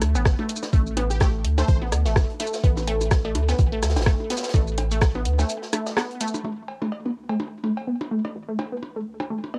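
Cool and quirky, this swung 126 BPM minimal techno excerpt rides a rubbery, pumping square bass over an Asus4 chord and a squelchy, phased blip pluck, joined by a soft, up-front electronic kick that drops out at 5.1 s, a booming analog drum machine with metallic hats that stops at 6.4 s, an airy open jazz kit of hi-hat and snare, tape-echoed percussion blips and cowbell, and a bright, catchy unison lead that flashes by at 1.1 s, with the whole recording carrying light reverb and a lo-fi cassette home-recording character.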